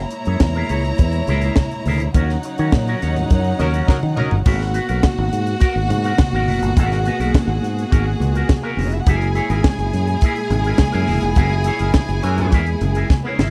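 A dry, close studio sound in the 1970s style frames this glamorous, driving disco cut. A tight funk drum kit with bright cymbals and a high-tuned snare sits up front beside a growly fingered electric bass. A smooth, bowed violin section carries a second line over lush sustained chords from a string section in the background, while a dark, clean electric guitar through an envelope filter adds accompaniment and very quiet, low-tuned congas sit distant in the mix. A warm horn section cuts in with short stabs at 3.6 and 12.2 seconds, and band accents and drum fills mark the turn into the second section at 4.5 seconds and the close of the cut.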